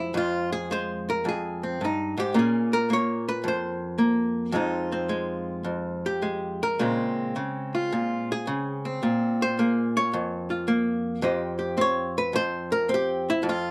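Swung eighths loosened by rubato carry this cool, swinging solo jazz fragment, cut from a longer piece, where a lone archtop guitar with an electric, dark, clean, compressed hollow-body tone is picked up front through close, detailed microphones and light reverb, moving from Fmadd9 through Bbmadd9, Fm9 and Bbm9 before resting on Fsus2 at 11.2 seconds.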